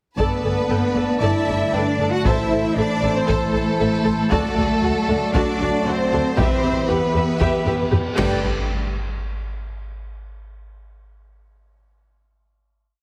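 Cinematic, epic orchestral film score in G major at 116 BPM, with an adventurous, majestic mood that moves through Gadd9, Am, D and Em before landing back on Gadd9. The violins carry the lush, vibrato-rich melody, doubling the tune at the octave, while a second violin line and the violas drive a rhythmic ostinato in the background. The cellos sing an expressive melodic line of their own, and the double basses anchor everything with a bowed, driving bass ostinato. Clear woodwinds hold sustained chords, while a distant, very quiet French horn section and smooth-topped trombones add slow swelling sustained chords beneath. A taiko ensemble struck with hard sticks pounds a big drum ostinato throughout, joined at 4.3 s by bright cymbal swells, crashes and concert bass drum strokes, and a drum fill at 7.7 s leads into a full accented final hit at 8.4 s. The sound sits on a reverberant scoring stage yet is heavily compressed, giving it a dense, radio-ready punch.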